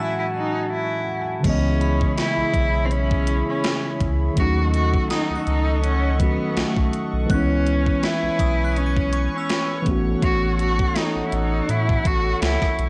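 Contemporary R&B at 82 BPM in C# minor, with a late-night, longing mood and a gentle swing on the sixteenths. The piece opens with a brief break in which a bowed cello carries the melody, vibrato and portamento giving it an expressive, distant voice treated with tape echo, over a worn, slightly out-of-tune tine electric piano, a shimmering chorused pulse-width pad with slow attack, and a crystalline FM bell glinting in the background. At 1.4 seconds a round sine sub bass and a gated 80s digital drum machine enter, the drums bringing a thumpy kick, gated-reverb snare, hi-hat, rim click and crash with overdrive and 12-bit sampler grit. The harmony moves from F#m9 through C#m7 and D#m7b5 before settling on A6, and the bell drops out at 10.2 seconds. The mix is dry and gritty with a cassette-tape character, and the passage is cut from a longer piece.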